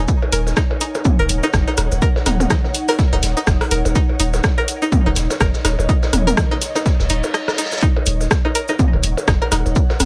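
A swung 4/4 groove drives this cool, sparse minimal techno excerpt, built on a tape-warm electronic kick up front, an analog drum machine's hi-hat and rim click, a grainy cabasa in the background, a delayed click kit of blips, rim clicks and toms, and a dark, rolled-off garage kit of hi-hat, shaker and snare set far back in a stone room. A deep sine sub bass with a pitch-drop attack pumps against the kick, while an ethereal, detuned pad with ensemble chorus and built-in reverb breathes underneath on a single Ebm7 chord. A twangy, string-like resonator pluck carries the riff through chorus, phaser and dub echo, and a reverse cymbal rises in at 7.0 s.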